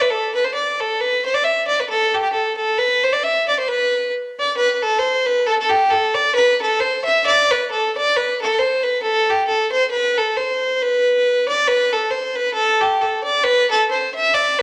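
A home cassette recording gives this short cut a homespun grain, and a wet spring reverb with a 1.5-second tail rings around the playing. It is a cheerful, rollicking piece of Celtic folk at 135 BPM in 2/4, with a light swing on the eighth notes and tuning set slightly under standard pitch at A4 = 439 Hz. A single bowed fiddle carries everything alone from 0.0 to 14.6 seconds, sitting up front in the sound with a clear, earthy tone and a smooth top. Its tape coloring lends the fiddle a worn, intimate character as it moves within a compact range from G4 to E5. The tune opens with a brief first strain, then turns to a second strain at 4.5 seconds that repeats from 11.7 seconds before the cut ends mid-flow.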